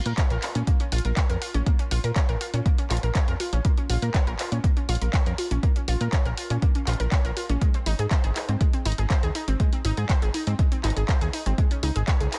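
A detuned analog pluck opens this dark, dramatic melodic techno excerpt, spinning bright, round arpeggios with a noisy edge, chorus, dub echo and sidechain pumping, alongside a punchy, funky analog bass and a deep house kit of handclaps and dusky hi-hats. A punchy electronic kick drum arrives at 0.2 s and sits up front at 121 BPM in a straight 4/4. The plucky sawtooth-and-square bass, also up front, pumps against the kick with a fast attack and decaying filter pluck. The harmony rests on Bb minor before moving to Ab at 7.6 s and Dbsus2 at 11.6 s, with the track tuned to A4 = 444 Hz. The layered drums carry a small-room character, and the mix is dry, dense and heavily limited in a modern style.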